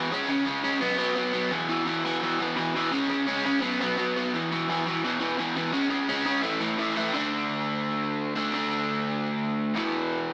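Punk with a rebellious, rowdy attitude drives this brief excerpt from a longer piece, played in a straight, fast four. A lone overdriven electric guitar carries everything from 0.0 to 10.3 seconds, its bright, picked tone double-tracked, compressed and set up front. The opening section cycles through C#5, B5 and E5 chords, then turns to A5 before a second section begins at 7.1 seconds on a D5 that resolves to E5 near the close. The guitar sits in a stone room with a wet reverb tail, giving the take the rough feel of a rehearsal-room recording. Warm saturation and a small-speaker character add grit and boxy bite to the sound.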